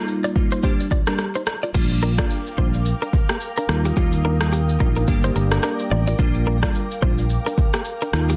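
Detuned, chorused digital keys with a mellow, full-bodied tone open this hypnotic, sultry afrobeats excerpt, joined almost at once by an up-front deep house drum kit (deep kick, rim click, shaker, crash and a softly clipped snare) and a clean, compressed electric guitar riff carrying vibrato and digital delay. A round, dark fingered bass arrives at 1.7 s as the chords move through Gm, Bb6 and Ebadd9, and at 2.0 s an ethereal FM pad with slow attack, ensemble chorus and built-in reverb lays bright sustained chords on top. The swung groove sits in a dense, heavily limited modern master with a digital ambience.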